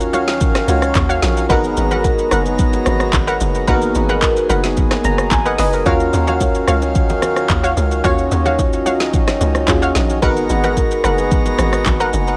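Late-night and deep, this amapiano excerpt moves at 110 BPM in Eb minor, swaying between Ebm9 and Abm9 chords. A biting, barking FM electric piano with chorus and phaser carries the accompaniment and plays a fill at 4.8 seconds. Beneath it, a reedy, breathing hand-pumped harmonium holds sustained chords with sidechain pumping, and a round, warbling analog pluck adds bright stabs through chorus and delay. Underneath, a hollow, bouncy log drum bass sits beside an up-front electronic drum kit with a deep kick, woody snare, metallic hats, handclaps, rim click and shaker, while very quiet, close and dry bongos and congas add hard-handed acoustic hits, set in a light digital ambience.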